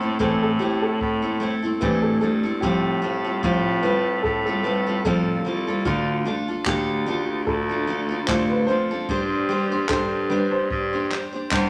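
A lightly swung sixteenth-note feel in 4/4 carries this wistful, reflective acoustic pop fragment, cut from a longer piece. A picked steel-string acoustic guitar sits up front with a woody, full-bodied jumbo tone and the character of old strings, laying down the accompaniment across the whole passage. A dark, mellow upright piano carries the melody in a middle register, its notes ringing with long sustain, while a clear, vintage-sounding baritone saxophone with vibrato handles the bass line, also placed up front. A jazz brush drum kit enters at 0.2 s, adding brushes, handclaps and a punchy kick from a studio room. The harmony moves from Am through Fadd9/A and Dm to Gsus4, and a large, wet studio reverb gives the mix a spacious, lingering air.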